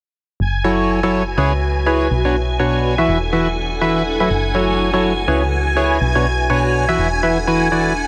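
A hollow, percussive organ stab leads this soulful, bittersweet house passage, cut from a longer piece, its riff sitting up front with a subtle chorus and dub echo over a swung groove in four. A punchy, round FM bass anchors the low end while a shimmering vintage string machine holds sustained chords with an ensemble chorus, both running from 0.4 to 8.1 seconds. A cloudy, blurred granular pad drifts in the background from 1.3 seconds, and a lush hall reverb wraps the minor-seventh and suspended chord cycle, which plays through twice.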